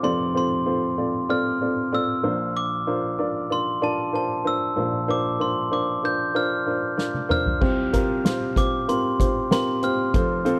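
A bell-like glockenspiel, struck with hard plastic mallets and given a slapback echo, carries the melody over a dark, woody upright piano in this uplifting, hopeful piano-driven pop excerpt at 95 BPM, with the chords moving from F to Bbadd9. At 7.0 seconds a soft-mallet drum kit with a boomy kick and dark cymbals enters with a fill that leads into a new section at 7.6 seconds on Csus4. All three parts sit up front in a dry, close 1970s-style studio sound with light reverb.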